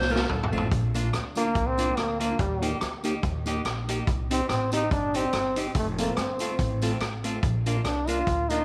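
A roomy echo-chamber glow surrounds this bouncy, joyful ska cut in Bb major at 143 BPM with a light swing, where a boomy street-band drum kit opens with a fill alongside thumpy gut-string upright bass under a brief clear alto saxophone phrase, then dark picked electric guitar, soft flute-like organ stabs through a slow rotary speaker, and a very quiet jingly tambourine join to carry the groove, with an up-front trombone with light vibrato taking the melody at 1.4 seconds.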